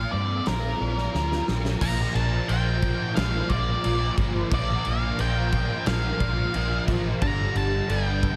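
Shoegaze-leaning dream-pop rock fragment, blissful and wistful at a straight, unhurried pace, where a bright, double-tracked fuzz guitar riff with ensemble chorus and a dark octave-fuzz lead melody steeped in tape echo ride over a round, foam-muted vintage bass, while a big acoustic drum kit with a fat snare and rolled-off top joins at 0.5 seconds and a drum fill leads into the longer second section at 1.8 seconds, all in a small, lightly reverberant room.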